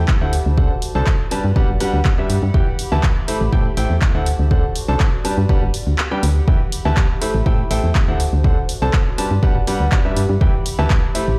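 A straight, steady pulse drives this soulful, bittersweet piano house excerpt, with a punchy, tape-warm electronic kick sitting up front and an analog drum machine adding handclaps and hi-hat. A round, fast-attack FM bass holds down the low end, pumping against the kick, while a clear, intimate concert grand piano carries the riff through a looping D7, Gmaj7, Em, Am7 progression, its action noise audible and its long sustain trailing into a delay. Far in the background, a warbling, nostalgic pad of detuned square, triangle and sawtooth tones drifts along with a slow attack, colored by chorus, phaser and its own reverb, and it pumps along with the bass and piano. The kick drops out briefly from 6.0 to 6.5 seconds before returning. The mix is fairly dry, though it sounds as if played over a big sound system in a bare room, with a large studio reverb framing the whole piece.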